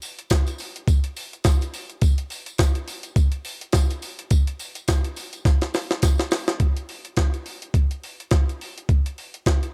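A gritty, compressed, pitched-up, tape-warm sampler-style drum kit with a thumpy kick, medium-tuned snare and hi-hat sits up front in this driving, glamorous disco excerpt at 105 BPM with a light sixteenth-note swing, while a jingly acoustic tambourine in a small room stays in the background until 6.5 seconds, a drum fill arrives around 5.5 seconds, and the drums carry on in a dark, warm, dry mix until the cut at 9.7 seconds.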